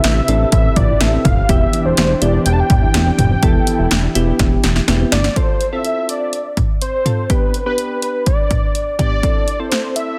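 A dense, heavily limited modern master with light reverb frames this melancholic, cool synth-pop fragment, cut from a longer piece and moving at 124 BPM in straight 4/4. Up front, a punchy, tape-warm analog drum machine drives it with hi-hat, kick, snare and toms, rolling into a fill at 4.4 seconds. A thick, bold, detuned sawtooth unison lead with a sub octave, vibrato and tape echo carries the melody throughout. Beneath it, a smooth, full-bodied dark pad with chorus sits in the background, joined by a glossy, retro synth bass with pulse-width modulation and a filter sweep, and very quiet, round pluck arpeggios; all three stop at 5.3 seconds. Gentle, mellow electric-piano-like synth keys with chorus enter at 0.3 seconds and play on, while the harmony moves from Fmaj7 to Em7 before shifting through F and G to Am.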